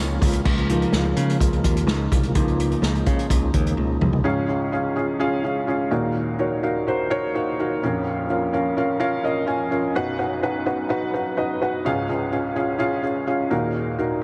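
Piano-driven pop at 126 BPM in Db major, hopeful and anthemic, in which a soft, felt-muted upright piano with an intimate, mellow tone carries the accompaniment through the whole cut-from-a-longer-piece clip while a smooth tonewheel organ with chorus vibrato and key click sustains chords in the background, a bright, growly picked electric bass sits up front, and an acoustic drum kit with a punchy kick, played with bundle sticks and dark cymbals, enters at 0.2 seconds, plays a fill from 3.8 seconds, and drops out with the organ and bass at 4.2 seconds, leaving the piano alone in a dreamy mix soaked in huge ambient reverb.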